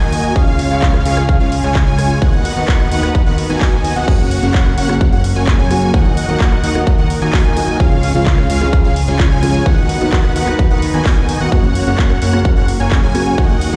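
Euphoric and triumphant, this excerpt of festival progressive house drives at 129 BPM in F# major, with a punchy, up-front electronic kick over a layered big-room kit of crash, handclaps, hi-hat and rim click, a fat saturated analog bass, and a huge, detuned supersaw riff with delay. A bright, wave-folded unison lead plays arpeggios through analog chorus and delay, while a reedy string section sustains chords in the background and sidechain pumping breathes through the strings, lead, supersaw, bass and later the piano. At 3.6 seconds a very quiet electronic swell leads into the entry of an intimate, boxy grand piano with audible action noise at 4.1 seconds, all set in a large studio reverb as if played on a big sound system in a bare room.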